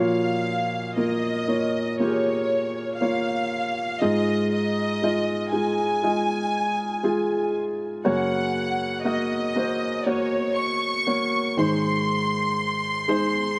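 Melancholic and emotional, this brief pop fragment sets a soft, mellow, intimate felt-muted upright piano accompaniment up front beneath a warm symphonic violin section that carries the melody with a smooth, bowed ensemble tone and light vibrato, the pair sitting in a light reverb.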